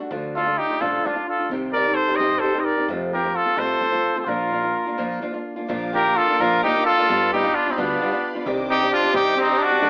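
A bright, up-front trumpet carries the melody with light vibrato and a distant, roomy classical tone, shadowed by a second, warm trumpet line, in this proud, festive mariachi excerpt in 6/8 at 87 BPM in Bb major. Fingerpicked nylon-string guitar, with audible finger squeaks, and a woody pizzicato upright bass support them, and a bowed violin section sits in the background with earthy sustained chords from 5.7 s. The whole has the lo-fi character of a cassette home recording heard over AM radio, with moderate spring reverb and small-room ambience.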